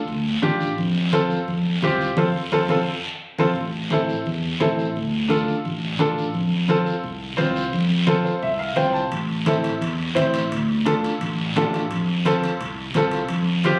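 Cumbia at 172 BPM in a passionate, fiery mood, with a bright, woody upright piano and a warm, up-front fingered electric bass carrying the Dm, F and Am changes over thick-skinned, damped congas and a raspy, distant guiro, a band accent at 2.2 seconds with a drum fill from 2.5 seconds and a piano fill at 8.1 seconds before ringing metal-shell timbales join at 9.1 seconds, all heard through a phone recording in a reverberant club room in this short cut from a longer piece.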